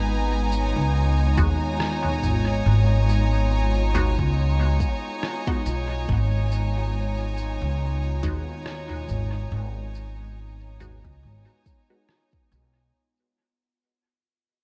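Ambient dub at 70 BPM in G# dorian, deep and meditative, resting on a single G#m7 chord in this short cut from a longer piece, with a fade-out running from 3.8 to 12.9 seconds. A woody, growly upright bass sits up front beneath clear, bowed chamber strings holding sustained chords with light vibrato, while an airy, wind-like noise texture drifts in the background through lush chorus and its own reverb. A muffled, tape-warm sampler kit of cabasa, rim click and toms soaked in dub echo enters at 0.5 seconds, and from 1.4 seconds a deep electronic kick joins it alongside a resonant, detuned chord stab colored by phaser and echo.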